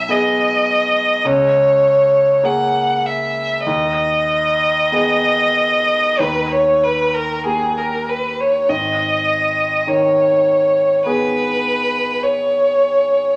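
A single bowed violin, warm, smooth and even with vibrato, sings a yearning melody up front over a bright, brilliant grand piano whose polished, present tone carries long sustain and audible action noise, in this solemn romantic classical duo, cut from a longer piece, that moves with rubato at about 47-53 BPM in 4/4 in G# minor through a large, wet studio reverb with a 1.3 s decay, the harmony arriving on D# at 6.2 s before resolving to G#m at 8.7 s.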